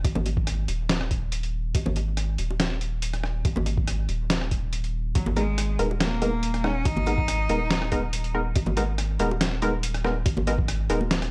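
This heavy, dark deep dubstep fragment opens on a half-time groove built from a deep, round sub bass sitting up front, a gritty, pitched-down electronic kick tucked into the background, and a compressed, sampler-style trip hop kit of hi-hat, rim click and a medium-tuned snare, placed forward in the mix with studio reverb. Ringing hand percussion on bongos and congas, struck with hard hands and recorded close and dry, carries a dub echo beneath the drums. At 5.2 seconds a single bowed cello enters with a rich, focused tone, smooth top and vibrato, also trailing dub echo, and it falls away by 8.3 seconds. Just after the cello arrives, a muted, filtered chord stab built on sawtooth waves begins to pluck and decay, its mellow sound coloured by chorus, cassette tape and dub echo, continuing to 11.0 seconds. A light reverb gives the whole mix a subtle sense of space.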